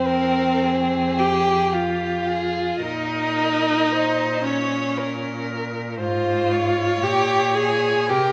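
Classical, a solemn, elegiac slow romantic movement for string quartet in 3/4 with rubato: a close, warm first violin carries the melody with soft attack, vibrato and expressive portamento over a distant, rich second violin line, while a smooth, even viola accompaniment sits up front and a focused cello holds the bass, each bowed by a single player in a wet recital-hall reverb, in this short excerpt cut from a longer piece.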